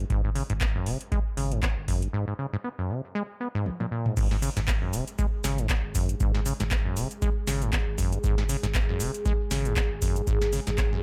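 A gritty, driving acid house cut with digital ambience, built on a squelchy, resonant sawtooth acid bass riff up front with tube saturation and delay, a thick saturated sub bass and a moody detuned pad in the background pumping to the sidechain, a deep tape-warm electronic kick, and a booming analog drum machine with crisp snare, metallic hats, claps, shaker, toms and crash, moving through a break at 2.1 seconds and a drum fill into the drop at 4.2 seconds.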